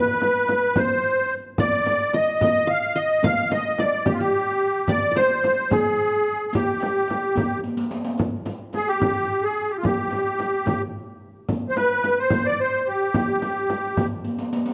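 Soulful and hypnotic, this passage from a longer Arabic maqam ensemble piece moves in 6/8, led up front by a reedy, shimmering musette accordion melody. A plucked qanun with bright-edged triple strings adds a second line in the background from 1.6 to 7.8 seconds, while a deep, close frame drum and a distant riq with dark jingles, both played with soft hands, carry the pulse and mark the new section with a fill at 7.6 seconds. Recital hall reverb and a dusky production give the ensemble a rounded glow.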